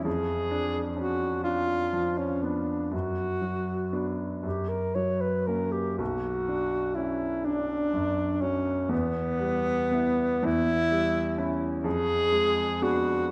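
An alto saxophone and grand piano begin together, both up front, on a diminished chord in B minor, opening this solemn, elegiac fragment of a longer romantic classical duo. The tempo is very slow, around 38-44 BPM counted in dotted quarters, in 6/8 with a free, rubato feel. The saxophone carries the melody in a classical solo style, its clear tone touched with light vibrato as it moves between B3 and C#5. Beneath it, the piano accompanies from the low B1 up to E4, its open sound ringing with long sustain. The harmony moves through Bm/F#, F#, Bm and Em, then C#dim/E, before returning to the diminished chord at 11.9 s. A wet recital-hall reverb surrounds both instruments across the 13.3 seconds.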